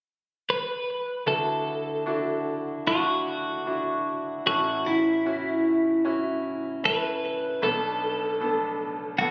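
A twangy, bright twelve-string electric guitar carries the melody from 0.5 seconds, clean and compressed, set up front with spring reverb and digital delay, in this tender, hopeful pop ballad in D major at 76 BPM, cut from a longer piece. At 1.3 seconds a bright concert grand piano enters beneath it with brilliant, polished accompaniment, deep bass and short sustain, as the chords move from Dadd9 to A and then Bm7. A moderate, lush hall reverb surrounds the pair, and the whole performance was captured on a phone in the room.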